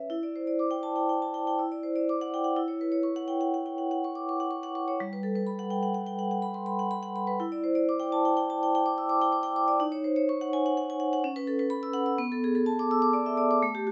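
Close, detailed microphones and a light reverb put the vibraphone up front, its tone metallic and ringing, with a boxy small-room character. This is a contemporary classical piece for solo vibraphone, and the passage is cut from a longer work, running to 13.9 seconds. Played with medium hard mallets and a slow motor vibrato, the instrument spans G3 to E6, moving through a rubato line in 5/4 that feels hypnotic and reflective. The harmony begins on Em7 and passes through Dadd9/E, Em13 and Gmaj7 before returning to Em7. From 9.8 seconds it drifts through D#m7 and C#m7 to settle on Bm7.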